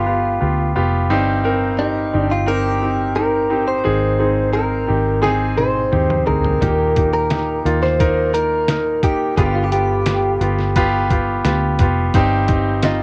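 A clean, direct-recorded electric guitar carries the melody in this hopeful, anthemic piano-driven pop excerpt at 87 BPM, its picked, compressed tone touched by subtle chorus and cassette tape coloring over a bright, brilliant concert grand that sits up front with deep bass and short sustain. A dark, foam-muted fingered electric bass adds round, punchy low end, while a lo-fi sampler-style drum kit, pitched down and muffled with a thumpy kick and fat snare, enters with a fill at 5.2 seconds. The harmony moves through G7, Cm/G, Ab and Eb, all set in a modest booth ambience with the character of a home cassette recording.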